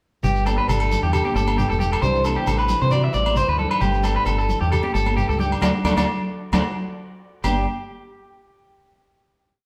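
A sunny, danceable highlife groove opens with a fingerpicked nylon-string guitar playing syncopated accompaniment, a twangy, slightly broken-up electric guitar picking an up-front arpeggio ostinato through spring reverb, a dark, round fingered bass riff, and a grainy, mellow shekere. Agogo bells ring out a low time line and soft-handed, high-tuned congas sit distant in the background from 0.5 s. The band hits an accent from 5.6 s before landing on a final chord at 7.4 s, with the live group's sound carried by a moderate stone-room reverb.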